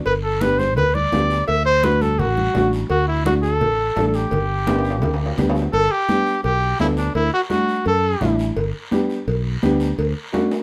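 Cumbia in G major, this festive, joyful cut from a longer piece moves at 169 BPM in a straight 4/4, with the harmony turning between G and D. A clear trumpet carries the melody up front, its smooth top and vibrato giving a pop-style solo voice that sings until 8.4 seconds. Beneath it, a dark, woody upright piano supplies accompaniment with a worn, boxy, slightly detuned character, short sustain and audible action noise that make it feel intimate. A round fingered electric bass sits up front with a direct, amped tone, while ringing congas stay close and dry in the background. Compressed, saturated cowbell and timbales add metallic shine, and a raspy guiro sounds distant, as if in a large room. A drum fill leads into the second section from 4.7 to 5.7 seconds, and another arrives at 10.3 seconds, all within a moderate studio ambience.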